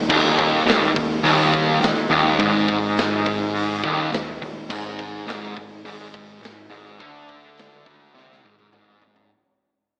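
Heard through a narrow AM-radio filter with light reverb, this fading fragment of hypnotic, ominous stoner and doom metal is led by an up-front, double-tracked fuzz guitar riff with a warm, distorted edge. Beneath it sits a growling picked electric bass, overdriven and set back in the background, while a big acoustic rock kit in a natural-sounding large room brings a punchy kick, a medium-tuned snare and bright cymbals. The drums close the passage with a fill from 8.2 to 9.3 seconds as the harmony moves from Ebsus4 to Ab.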